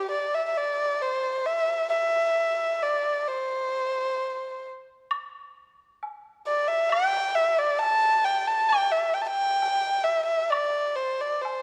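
Graceful and pastoral, this short cut from a longer piece of Chinese traditional chamber music moves at a slow, rubato 66 BPM in 2/4, set in a C gong mode. A single bowed erhu carries the melody from the start to 11.6 seconds, ranging from G4 to A5, its tone warm and intimate with vibrato, a soft attack, sliding portamento and an airy bow. The erhu sits close and up front, while a moderate concert-hall reverb of about 1.9 seconds lends a gentle bloom around it. At 5.1 seconds the music moves into a second section and a quieter woodblock joins, with a dark, acoustic, small-room character. The overall production leans dusky and mellow, keeping the focus on the erhu's expressive line.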